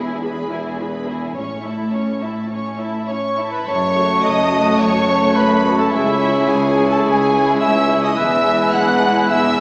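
A dark French horn section stands out most, its soft-attacked sustained chords arriving at 3.7 seconds from a roomy, distant position in this swashbuckling, adventurous cinematic cue, cut from a longer heroic adventure film score in F# dorian at 106 BPM in a straight 4/4. Above it, a lush, rich violin section carries the smooth, vibrato-laden melody from the start, with a second violin section in the background tracing a warm second line. A focused, close viola section fills in the accompaniment, while a bowed cello section with light vibrato and a symphonic double bass section anchor the low end. A mellow trumpet in the background adds stabs from 3.1 seconds, and soon after a clear oboe and a pure, hollow silver concert flute with a crisp attack join on second lines as the harmony moves from E and A into F#m, C#m and back to E. Everything sits in a wet recital hall reverb and is heard from further back in the room, giving the orchestra a small-speaker sound.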